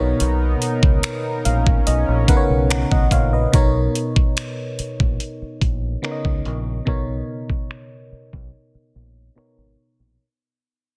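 A dreamy, romantic contemporary R&B excerpt at 72 BPM opens on a Bmaj9 chord, with a glassy, bell-like FM electric piano carrying the accompaniment, a shimmering, detuned pulse-width pad pumping beneath it until 3.5 seconds, and a round, dark fingered electric bass sitting up front. A trap kit arrives almost at once with a knocking kick, metallic hi-hats, finger snaps and a softly clipped snare, while the chorused electric piano adds a fill before the music begins a fade-out and filter sweep from 3.5 seconds. A break arrives at 8.5 seconds, all inside a dense, heavily limited mix bathed in digital ambience.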